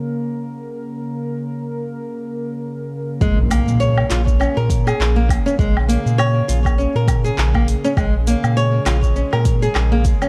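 A warbling, detuned lo-fi pad with chorus and sidechain pumping sustains a Bb minor chord alone until 3.2 seconds, when a fingerpicked flamenco guitar with digital delay and audible finger squeak plays arpeggios up front over a round sine sub bass with tube saturation, a deep electronic kick, a low-pass-filtered deep house kit of handclaps, hi-hat, shaker and woodblock, and a very quiet electronic impact, giving this mystical organic downtempo excerpt at 101 BPM a dark, warm, nostalgic glow.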